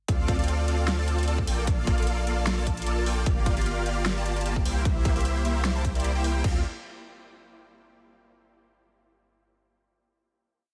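This short future bass piece opens straight into a lush, bittersweet drop at 151 BPM. The half-time beat in 4/4 carries a light swing on the 16ths. Huge, detuned supersaw chords sit up front with a dotted rhythm and open voicings, their bright sawtooth unison thickened by a sub octave and shimmering through ensemble chorus, sidechain pumping and tape echo. Beneath them, a deep, saturated sub bass holds sustained roots and pumps with the sidechain. The electronic kick is punchy and layered, with a tape-warm body and the character of a large room. It drives the half-time groove alongside a dubstep kit of huge snare, bright closed and open hats with rolls, and crash cymbal. The harmony in D minor moves through Dm7, Bbmaj7, Gm7 and C7, and the drop gives way at 6.4 seconds to a final Dm7 in a dry, close sound.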